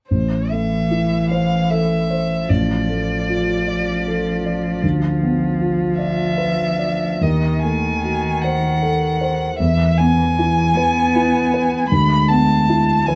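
A smooth violin melody sung with vibrato sits up front in this melancholic, elegiac excerpt from a slow romantic piano trio movement in A minor, unfolding in a rubato 6/8 at 51 BPM as a rich, focused bowed cello carries a second line beneath it and a dark, mellow concert grand with deep bass supplies the accompaniment, all three playing throughout in light reverb while the harmony moves from Am through Dm/A, diminished chords and E toward a closing E7/D at 11.9 seconds.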